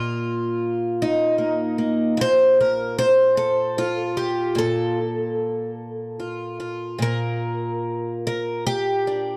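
A picked twelve-string acoustic guitar is heard alone from the first moment, its octave-doubled strings giving a shimmering, slightly boxy parlour tone placed up front in a dry, close recording with a hint of small-room ambience. This brief fragment of a longer solo fingerstyle folk piece moves in a slow, rubato 6/8 at around 50 dotted-quarter beats per minute, lending it an unhurried, hopeful yet nostalgic mood. The harmony rests on a Bb bass, moving from Eb5/Bb to F/Bb at 2.2 seconds before settling on Bb at 7.0 seconds. The guitar spans from Bb2 up to C5, and the instrument is tuned slightly above standard pitch, with A4 at 441 Hz. The sound recalls a 1970s-style studio session, intimate and close.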